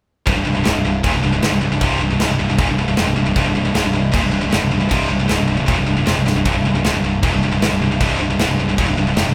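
The sound is that of a band playing live in one room, wrapped in a moderate studio reverb that gives the hits a short tail. This relentless, dark heavy metal passage, cut from a longer piece, drives a straight 4/4 at 155 BPM in C minor, resting on a C minor chord. Two high-gain electric guitars carry the riff low in their register from 0.3 to 9.3 seconds: one is heavy, distorted and up front, while the other has a scooped, bright edge and sits further in the background. An overdriven electric bass, direct and amped, growls underneath. An acoustic studio drum kit pushes everything forward with a punchy kick, a medium-tuned snare and glittering crash cymbals. A drum fill at 6.3 seconds breaks up the beat before the riff carries on.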